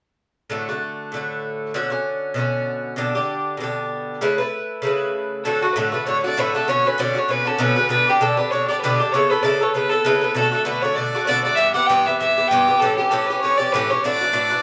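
A picked acoustic Irish bouzouki opens this cheerful, rollicking slice of Celtic folk at 0.5 seconds, its double strings ringing with a metallic shimmer as it picks through a cycle of chords that leans on colored shapes like Bmadd9 and Aadd9. The feel is a brisk common-time swing that gives the tune a lilting, dance-ready bounce. At 5.4 seconds a single bowed fiddle takes up the melody, its tone clear and earthy as it rides over the bouzouki's steady accompaniment. Both instruments sit up front, sounding like a band playing live together in one room, with a moderate studio reverb adding a touch of space. In this second passage the harmony moves through D6, Em and A7 before settling on Dadd9, and the piece is cut off at 14.6 seconds as though lifted from a longer performance.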